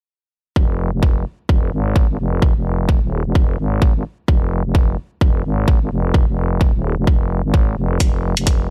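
Aggressive and gritty, this bass house excerpt runs on a swung 4/4 groove, with a punchy, layered electronic kick sitting up front from 0.6 seconds alongside a growling, thick FM bass that holds low sustained notes, its tube saturation adding grit and sidechain pumping giving it a pulsing motion. Both parts carry through the whole piece, the kick drum with studio reverb, while bright electronic hi-hats slip in only at 8.0 seconds before the cut. A digital ambience frames the sound.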